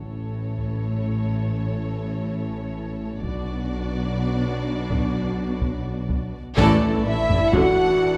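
In free time and A major, this triumphant, adventurous cinematic orchestral passage, cut from a longer piece, sets a lush, distant violin melody over a second violin line, expressive violas, mellow French horns, and a dark bass of woody cellos, tuba and double basses, driven by close, dry taiko from 0.6 seconds, before a band accent and impact at 6.6 seconds bring in a pure silver flute and roomy trombones, followed a moment later by a huge sub drop, all in a moderate concert hall reverb.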